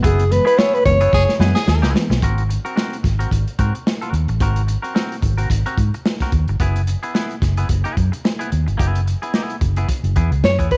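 A funk groove at 110 BPM in 4/4 with a light 16th-note swing sets a gritty, playful mood in this short cut from a longer piece, moving from a Gb9sus4 chord to Ab9 at 2.2 seconds and back at 6.6 seconds. A crunchy, saturated breakbeat kit sits up front with a tight kick, medium-tuned snare and hi-hat, its top rolled off, while a dark, round, foam-muted fingered bass punches beneath it. A bright, clean, picked guitar with a twangy, compressed edge plays accompaniment throughout, and a mellow tine electric piano adds stabs from the background early on. A breathy, whispered alto saxophone, close-miked and intimate with subtone, scooped notes and slapback echo, opens with a short solo over a band accent and a drum fill, then returns briefly at 10.4 seconds. A clear tenor saxophone with vibrato and slapback echo touches in as a second line at 1.1 seconds, all set in a small room with light reverb.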